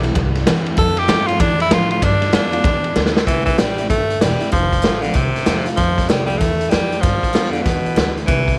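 An edgy, forceful tenor saxophone takes the lead up front from 0.8 seconds, its solo lines full of vibrato and scooped notes in this retro, rollicking rockabilly excerpt at 192 BPM with a swung feel in C major. Beneath it, a gritty, saturated garage drum kit with a punchy kick and a rolled-off top drives the groove and drops in a fill at 3.0 seconds, while a woody, thumpy pizzicato upright bass holds down the low end and a bright, full-bodied picked dreadnought guitar sits in the background. The chords move from C through F to G7, and the sound is dry, with little reverb.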